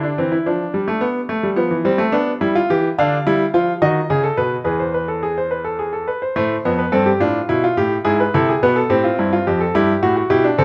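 A brilliant, up-front grand piano plays alone in this baroque-style three-part fugue, a solemn, contemplative classical excerpt moving at 71 BPM in a straight 6/8 and spanning E2 to F5. Its short-sustained, natural tone is caught by close, detailed microphones within a moderate recital hall reverb, as the opening passage moves through Am, G and Dmadd9 to a B7 and E. At 6.4 s a second passage begins on Am, passing through Dm/A and E/G# before coming to Em/G.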